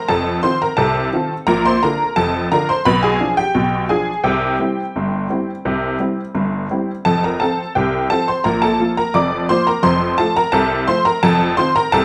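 Ragtime piano in a playful, jaunty mood, moving in a straight two-beat metre as a solo honky-tonk upright carries the whole twelve seconds, its detuned, jangly, vintage tone sitting bright and up front across a span from deep bass to high treble. The harmony strolls from F7 through Bb and a diminished chord to C before settling back home and landing on F7 again at 11.2 s. A moderate reverb from a large studio room gives the piano a sense of space around its close sound, in this short cut from a longer piece.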